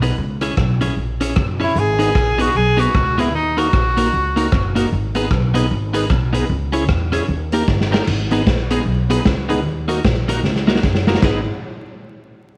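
Energetic and driving, this short ska excerpt moves at 152 BPM in G# minor with a swung eighth-note feel, cycling through C#m, G#m and D#m before landing back on G#m. An up-front upright bass, plucked and woody with a growly, thumpy low end, anchors the groove beside a raw garage drum kit whose punchy kick, medium-tuned snare, rim clicks, hi-hat and dark, rolled-off cymbals sit in a bright stone room with a slapback echo. A clean, compressed electric guitar with a scooped tone and its own slapback echo fills in the accompaniment from the start. A clear tenor saxophone with light vibrato carries a brief, roomy solo melody from 1.6 to 4.8 seconds, while a reedy tonewheel organ with key click, chorus vibrato and a slow rotary speaker adds stabs from 2.0 seconds onward, tucked in the background. Drum fills mark the turn into a new section at 8.1 seconds and lead toward another near the end, all over light reverb, studio ambience and a layer of vinyl crackle.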